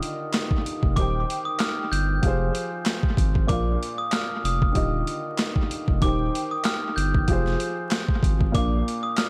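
A bright, bell-like glockenspiel melody opens over a worn, woody, slightly detuned upright piano with a cassette-tape tint and a thumpy, up-front sampler-style drum kit of kick, high-tuned snare, hi-hat and handclaps in this gritty, reflective 95 BPM boom-bap hip-hop cut in C minor, with a deep, saturated sine sub bass entering at 0.8 seconds beneath the Ebmaj7, Cm/Eb, Fmadd9 and Bb changes, all inside a dry, echo-heavy mix dusted with vinyl crackle.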